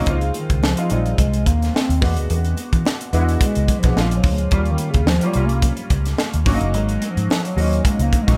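A breathy, close-miked bass clarinet with light vibrato and scooped notes takes a jazz-style solo from 0.4 seconds in this breezy, glossy 1980s jazz-funk pop excerpt at 108 BPM in Db major, with gently swung 16ths, riding over a round, foam-muted electric bass, a crisp fusion kit with a high-tuned snare and tight kick, a clear but worn grand piano with analog chorus, and very quiet thick-skinned congas, all set in light reverb over chords moving from Dbmaj9 to Ab9sus4.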